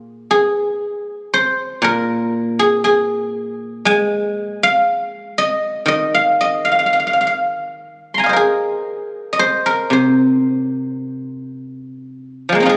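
Longing and contemplative, this short excerpt of Chinese traditional music features a solo guzheng unfolding in a free, rubato feel over a slow pulse in four. The acoustic guzheng, played with fingerpicks, sits up front with a warm, ringing, silvery tone, spanning from Bb2 up to C6. It plays alone for the full 12.8 seconds, carrying a single section that is cut from a longer piece. The sound has a casual, live character, captured on a phone in the room with club ambience around it, light reverb and compression. That informal phone capture gives the plucked lines an intimate, overheard quality.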